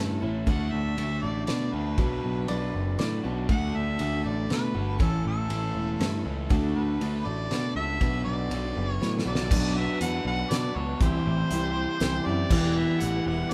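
Recorded live by a band in one room with light reverb, this nostalgic, jangly folk rock and heartland rock excerpt has a warm, lively feel. At 120 BPM in a straight 3/4 in D major, a vintage harmonica carries the melody with vibrato and scooped notes. Beneath it, a full-bodied dreadnought acoustic guitar picks the accompaniment in the background, and a bright, double-tracked overdriven electric guitar plays a crunchy riff through spring reverb. An up-front picked electric bass anchors the low end, and a loose indie drum kit joins at 0.5 seconds with a fat snare, punchy kick and dark cymbals in a pumping room. A round, double-strung mandolin adds a brief second line with tape echo at 2.5 seconds. During a drum fill, a very quiet, lightly overdriven tonewheel organ enters at 9.2 seconds with sustained chords, key click and rotary speaker, as the harmony moves to C and Em.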